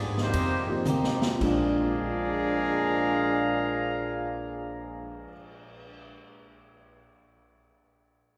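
Swinging and energetic, this short big band swing excerpt in Bb mixolydian moves at 104 BPM in 4/4 with a strong swung eighth-note feel. An up-front trumpet section with a smooth top carries the melody, while a tight trombone section adds a second line with light vibrato and a soft attack. Underneath, a woody pizzicato upright bass holds the low end, and a very quiet, boxy picked acoustic guitar and an intimate upright piano, with audible action noise and short sustain, fill in the harmony. A distant, roomy drum kit with a boomy kick and medium-tuned snare drives the music with ride, hi-hat, crashes, toms and a cymbal swell. The opening slows down, and a drum fill from 0.9 to 1.4 seconds leads into a Bb13 chord at 1.4 seconds. The whole ensemble sits in a cathedral-like reverb with a long tail, and a faint mains hum can be heard beneath it.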